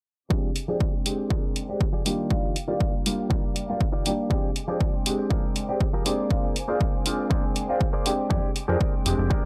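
Filtered disco house at 120 BPM in F dorian, funky and sensual, cut from a longer piece, with a bright, worn concert grand piano up front laying down Fm69, Ebmaj9 and Bb9 chords through phaser, 12-bit sampler grit, sidechain pumping and a low-pass filter, while a filter sweep runs across the whole passage. A twangy, scooped clean electric guitar plays a riff and a distant chamber violin section holds bowed, vibrato chords in the background, both pumping under the low-pass filter, over a punchy overdriven electronic kick and a layered, tape-warm hi-hat. A fat, detuned sawtooth bass enters only at 8.3 seconds, and the mix sits in a digital ambience.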